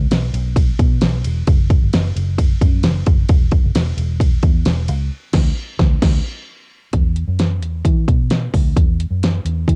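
Jangly indie pop at 132 BPM with a wistful, restless mood: a dark, round, foam-muted electric bass sits under an up-front pop drum kit with a punchy kick, fat snare and metallic hats, the drums carrying a cassette-tape grit in a dry home recording. The band hits an accent from 5.1 to 6.9 seconds before a new section takes over for the rest of this short cut from a longer piece.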